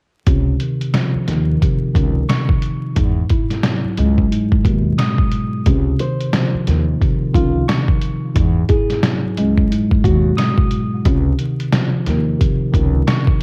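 At 0.3 seconds, a worn, slightly out-of-tune tine electric piano enters up front with an upright bass and a sampler-style drum kit. Together they set a nostalgic, soulful boom-bap hip-hop groove at 89 BPM in 4/4, with a swung sixteenth feel, in this portion cut from a longer piece. The piano's clean tone sounds as if it is coming through built-in speakers, filtered and coloured by cassette tape as it moves between Dbmaj9 and Emaj9 chords in Db major. The drums sit up front, compressed, pitched down and muffled, with a thumpy kick, a medium-tuned snare and hi-hat that sound re-recorded in a small room, while the pizzicato bass is woody and growly with steel strings. At 6.0 seconds, a classical nylon-string guitar carries a softer, thumb-plucked melody with audible finger squeak, filtered and touched by analog delay, until 10.3 seconds. The home cassette recording is dry, with vinyl crackle running underneath.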